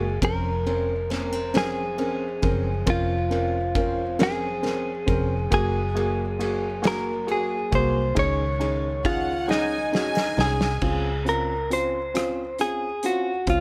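Tender and heartfelt, this slow six-eight pop ballad is a short cut from a longer piece, set in a small room ambience. A clean, compressed electric guitar, recorded direct and placed up front, carries the melody over a felt-muted upright piano whose soft, intimate tone lets its action noise come through. Beneath them, a dark, round, foam-muted electric bass anchors the low end, while a bright dreadnought acoustic guitar sits in the background with picked arpeggios and a little finger squeak until 11.4 seconds. A loose indie drum kit with a punchy kick, medium-tuned snare, dark cymbals and a pumping room sound comes in at 0.2 seconds and plays a fill from 9.5 to 10.8 seconds. Around that fill, a lush studio violin section adds a brief bowed second line with vibrato and tape echo from 9.1 to 10.8 seconds, ending just as the harmony settles onto a major-seventh chord for the closing passage.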